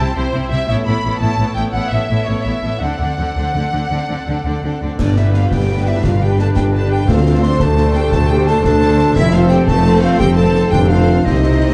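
Dark, warm scoring-stage sound with moderate reverb frames this soaring, triumphant excerpt of heroic adventure film score in 12/8 at 114 BPM, where intense, distant violins carry the melody above a smooth-topped second violin line, clear violas, rich cellos and focused double basses, until at 5.0 s, as the harmony settles into G mixolydian, a pure silver flute, a close-miked clarinet, mellow French horns holding chords, a very quiet vintage tuba, and concert snare, bright clash cymbals and bass drum join in, with a brief hard-mallet timpani stroke at 7.1 s.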